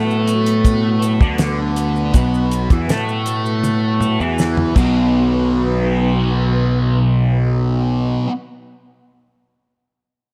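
A hazy, kaleidoscopic slice of psychedelic rock, cut from a longer piece, opens in a lightly reverberant studio space at a slow 80 BPM in straight 4/4, centred on B mixolydian. A thick, double-tracked fuzz guitar sits up front with a distorted riff run through phaser, joined by a punchy, overdriven picked bass that shares the foreground with its fuzzy growl. Behind them, a vintage string machine voiced as cellos holds full, slow-attack sawtooth chords, its mellow tone evolving through phaser and ensemble chorus. A damped 70s drum kit with a fat snare and tight kick drives the groove alongside grainy, saturated maracas tucked in the background, and the drums roll into a fill from 3.6 seconds. The kit drops out at 4.9 seconds and the maracas at 5.5 seconds, leaving guitar, bass and strings to carry the closing passage through to about 8.3 seconds.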